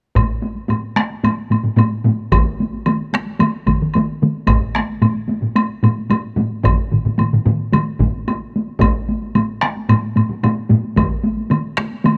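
A close 1970s-style studio sound with light small-room reverb frames this driving, ceremonial Japanese traditional taiko excerpt at 111 BPM in straight 4/4, where four taiko parts struck with hard or heavy sticks (one compressed and saturated, one vintage and band-limited, one dry, and one carrying live-room air that enters at 2.3 seconds) pound alongside a woody woodblock heard from 0.2 to 12.2 seconds.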